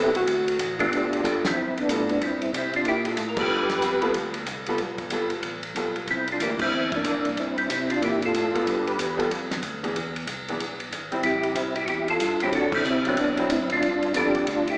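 A percussive tonewheel organ carries the melody up front, its round, mellow voice colored by third harmonic percussion, chorus vibrato and a slow rotary speaker in this soulful, greasy soul jazz organ trio excerpt. Swinging at 186 BPM in 4/4 and centered on G mixolydian, the tune moves mostly between G9 and C9 before passing through E, Am7 and D9 on its way back to G9. Underneath, a second tonewheel organ handles the bass line with a fat, lightly overdriven tone, audible key click and the same slow rotary churn, while a dark, clean hollow-body archtop guitar picks out accompaniment and drops away at 14.3 seconds. The acoustic drum kit sits in a tight, pumping booth sound with a fat snare, tight kick and rolled-off, dark cymbals, and the band hits accents together at moments such as 1.4 and 6.6 seconds. The whole trio is bathed in a wet recital hall reverb yet comes across with a small speaker quality.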